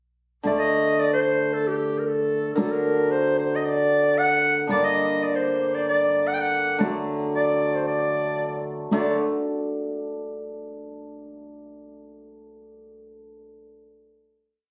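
Captured on a phone in a small room with moderate reverb, this short, complete klezmer piece moves at 113 BPM in a straight 4/4 in D phrygian dominant, with a bittersweet, soulful mood. A mellow clarinet sits up front with a jazz-inflected modal melody full of ornaments, vibrato and scooped notes, while a shimmering, ringing hammered dulcimer plays off-beat triad chords and a woody, growly pizzicato upright bass plays a quarter-note figure underneath. The harmony moves from D to G minor at 4.7 seconds and back to D at 6.8 seconds, settling on a final chord from 8.9 seconds.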